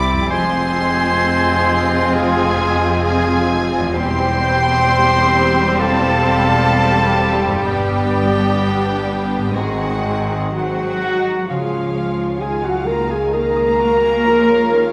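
Cinematic orchestral film score, moving and tender at a rubato 65 BPM, in which a veiled, con sordino chamber violin section carries the melody over background flute and muted symphonic violins, a bright solo clarinet line that stops at 10.5 s, muted violas, distant horn chords, a very quiet ringing harp in arpeggios, and muted cellos and double basses, all in a wet scoring-stage reverb, moving from C major to Db major at 11.5 s in this excerpt from a longer piece.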